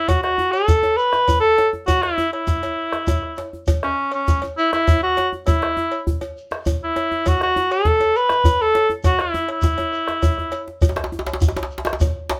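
West African traditional drum ensemble music in a straight 12/8 at 134 BPM, festive and earthy in mood, taken from a longer piece. A warm cor anglais carries the melody up front from the start, played in a classical style with light vibrato and moving between C#4 and B4 until about 10.6 seconds. Beneath it, a round bombo sits in a small room, a metallic cowbell sounds close and dry, and a medium-tuned djembe with metal rattles plays along, while a grainy, mellow shekere sits in the background of a live room. A drum fill at 10.4 seconds leads into a new section where a second djembe, tight and cracking under hard hands, joins up front at 10.9 seconds. The whole is set in a moderate studio reverb.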